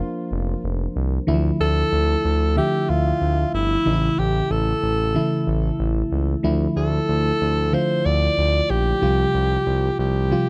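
Recorded dry and close in a 1970s-style studio with only light reverb, this short cut from a longer 1980s-style pop piece feels nostalgic and uplifting in a straight 4/4. A bright alto saxophone carries the melody up front, singing with a light vibrato and trailed by a tape echo. Beneath it, an FM electric piano supplies glassy, bell-like chords that decay gently, thickened by chorus and a faint noise layer for a mellow, full-bodied texture. A smooth synth bass with sawtooth and triangle tones enters at 0.3 s and holds sustained low notes up front in the mix. After a brief opening on Bb/F, the harmony moves at 1.3 s through Dmadd9, A and back to Dmadd9 before settling on Csus4 at 9.0 s.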